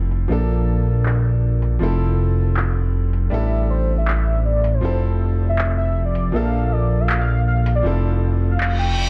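A fat, detuned sawtooth analog bass with ring modulation and a filter sweep sits up front in this bright, playful future bass excerpt at 159 BPM in a half-time 4/4 feel, in F major, moving through Bbmaj7, Fmaj7 and A7sus4 chords. A clear grand piano with dub echo plays the accompaniment, while a layered electronic dubstep kit of handclaps and hi-hat, low-pass filtered and re-recorded in a large room, sits back in the mix. A velvety, chorused synth lead with vintage 12-bit sampler grit and dub echo carries the melody from 3.3 seconds, and a reverse cymbal enters up front at 8.7 seconds, all in a dry mix with little reverb.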